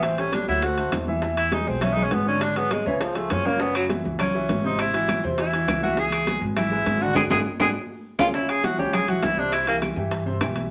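Up front, a tenor saxophone with a clear, vintage tone takes the solo, shaping its jazz lines with light vibrato and scooped notes before it falls away at 9.8 seconds. This fragment of a longer Afro-Cuban jazz piece feels sophisticated and driving, with a concert grand piano accompanying in a natural voice that reaches down into deep bass, while a pizzicato upright bass with steel strings adds a woody foundation. Tight, high-tuned bongos struck with hard hands and bright congas played with soft hands, sounding distant in a large room, sit in the background, while close, dry timbales ring out from their metal shells. Band-limited claves enter at 3.7 seconds. At 7.2 seconds the band hits an accent, capped by a short drum fill, before the opening section starts again, all held in a wet studio reverb.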